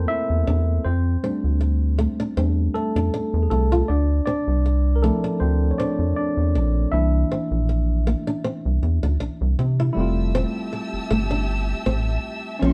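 Lightly reverberant and close, this smooth, relaxed neo-soul R&B cut sounds like a band playing live in one room, with a gentle swing. A worn, slightly out-of-tune tine electric piano, clean through a combo amp, carries the lead over a rubbery, hollow, bouncy synth bass with a resonant filter pluck, while a small, fingerpicked nylon-string guitar joins at 0.5 s. At 9.9 s a dark, lush studio string section enters with bowed, vibrato-rich sustained chords as the harmony settles onto Fmaj9.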